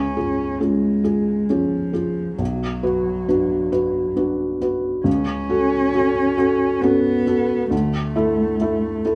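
Neoclassical piano and strings in F# minor, melancholic and fragile, drift at a rubato 68 BPM in 3/4 through this 9.2-second fragment of a longer piece: a felt-muted upright piano, mellow and intimate with audible action noise, sits up front as accompaniment over C#, Bm, F#m/C# and Dsus2, while a single bowed cello, dark and woody with vibrato and sul tasto tone, carries a close second line, the two playing live together in a stone room with a moderate reverb.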